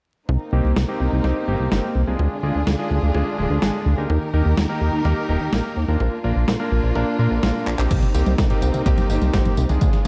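A straight 4/4 pulse at 126 BPM drives this nostalgic, melodramatic Italo disco passage in C minor: a punchy analog kick and a clean 12-bit drum machine of snare, hi-hat, handclaps, tambourine, congas and crash, both re-recorded in a large room, with a drum fill at 7.7 seconds. An up-front, glossy, nasal chorused synth bass with tube saturation carries a filter sweep through the opening. Above it sit sustained bowed strings with vibrato and clangy, cutting electric grand piano stabs with low-pass filter and tape echo, over a Cm7, Ddim, Eb, Bb progression, and at 7.9 seconds a very quiet, round, detuned analog pluck arpeggio enters, all within a dark production with light reverb and vinyl crackle.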